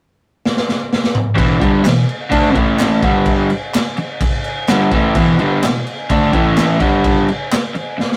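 A straight 4/4 pulse at 127 BPM drives this raw, swaggering garage rock excerpt, opening with a drum fill from 0.4 seconds on a gritty, punchy kit of kick, medium-tuned snare, toms and crash cymbal, heard up front with a pumping small-room sound and a rolled-off top. At 1.3 seconds a crunchy, overdriven, double-tracked electric guitar riff kicks in, picked between E2 and D4 and moving through E5, A5 and G5 power chords, with crisp, close and dry group handclaps joining at 1.8 seconds. The rough rehearsal-room recording carries tube saturation and a short booth ambience, and another drum fill arrives at 8.0 seconds as the cut ends.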